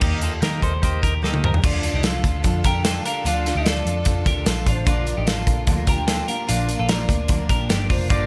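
A straight 4/4 pulse at 148 BPM sets this bright, nostalgic slice of jangly indie pop in Bb major, cut from a longer piece. Up front, a modern studio drum kit with a punchy kick and medium-tuned snare sits in a pumping room, joined by a dark, round, foam-muted electric bass with an amped punch. A clean, twangy twelve-string electric guitar spins compressed picked arpeggios throughout, while a picked dreadnought acoustic guitar stays warm in the background and a buzzy vintage combo organ plays at the opening and again briefly at the very end. After a drum fill at 1.2 seconds, the harmony moves from Eb to Dm at 1.6 seconds, where a very quiet, lush symphonic string section enters with bowed, vibrato chords and a distant, jingly tambourine joins. Just before this, from 1.4 seconds, a distant, reedy bass bansuri takes up the melody in a pure, tongued, straight tone, with the chords settling on Bb and light reverb rounding out the sound.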